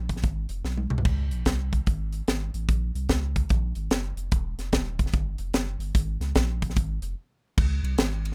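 A deep, round sine sub bass with a fast attack and sustained tone opens this jubilant, reverent uptempo gospel excerpt at 147 BPM in swung 4/4 and Db major, and is joined almost at once by a crisp, airy fusion drum kit with a high-tuned snare, tight kick, crash, ride, hi-hat and toms. A drum fill arrives at 0.7 seconds and a break at 7.2 seconds, all heard in a dry, rough home demo mix.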